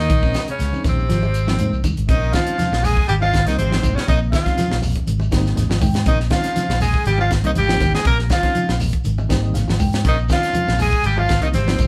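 A gritty, forceful tenor saxophone leads this funky, hypnotic afrobeat excerpt up front, backed by a bright, distant trumpet and a raspy baritone saxophone, while a round, amped fingered bass and a tight, dry funk drum kit with a high-tuned snare anchor the groove, a clean electric guitar plays fingered arpeggios in the background, a reedy electric piano with fast tremolo accompanies and adds fills at 5.3 and 9.1 seconds, and a grainy shekere and very quiet congas round out the percussion over a repeating two-chord vamp in a live-sounding room.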